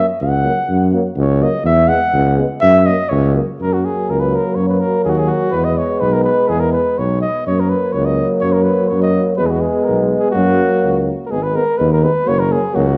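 Heard through a moderate concert-hall reverb with a 1.5-second tail, this festive, virtuosic Balkan brass band passage in a straight 2/4 at 124 BPM and F# mixolydian puts a mellow, lightly vibrato flugelhorn melody up front, featured from 0.0 to 3.6 s, over a smooth-topped trombone with vibrato, a warm, soft-attacked euphonium set in the background and an up-front tuba bass with light vibrato, with harmony swinging between F# and E before a G#m at 11.3 s turns it back home.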